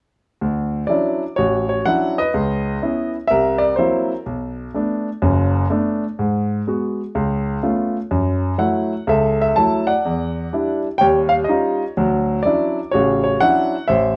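A relaxed swing at 125 BPM in 4/4 drives this short solo jazz excerpt in D major, its eighth notes lilting with a gentle triplet feel. A grand piano carries everything alone from 0.4 to 14.2 seconds, ranging from F#1 up to A5, and its sound is clear, intimate and natural, placed up front with the soft clatter of its action audible beneath the notes. The harmony moves through rich jazz colours, opening on Dmaj9 and passing through C#m9, C7#11, Bm7, G#m7, C#aug7, F#m7, Em7 and Eb9 before settling back on Dmaj9 at 12.0 seconds. A moderate studio reverb lends the instrument a modest sense of space. The whole recording carries the character of worn, old cassette tape, with a warbling pitch drift that adds a hazy wobble to the easygoing mood. It is cut from a longer piece, capturing a single passage.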